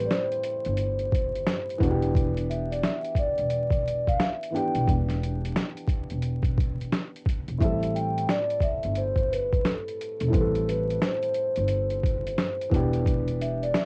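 Vinyl crackle and a light reverb frame this short lo-fi hip hop excerpt, which carries the hazy character of a home recording on cassette. At 88 BPM in 4/4, with a swung sixteenth-note feel in A minor, the mood is reflective and nostalgic as the harmony moves through Am7, Em7 and Am9. A vibraphone played with soft mallets and the motor off carries the melody between A4 and G5 in a ringing, metallic tone. Beneath it, a dark upright piano adds intimate, vintage accompaniment with audible action noise, and both of these parts pass through a cassette tape effect. A pizzicato upright bass with steel strings sits low and woody, stopping at 13.7 seconds. The trip hop sampler-style drum kit enters at 0.1 seconds and sits up front, its thumpy kick, medium-tuned snare and hi-hat sounding compressed, pitched down and gritty under the same tape treatment.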